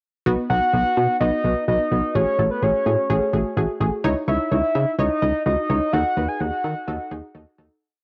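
A straight 4/4 pulse at 127 BPM drives this short, nocturnal and cool synth-pop pre-chorus, with a punchy, rounded FM bass underpinning a warbling, dusty pluck that plays close-voiced eighth-note chords over B, F#madd9/A, C#madd9 and D#dim. A soft, octave-layered lead with vibrato, chorus and analog delay sings motif-based phrases up front, while the pluck's detuned, wave-folded tone shifts under a filter sweep. The dry, gritty sound carries transformer saturation and cassette-tape character, and the piece fades out from 5.9 to 7.8 seconds.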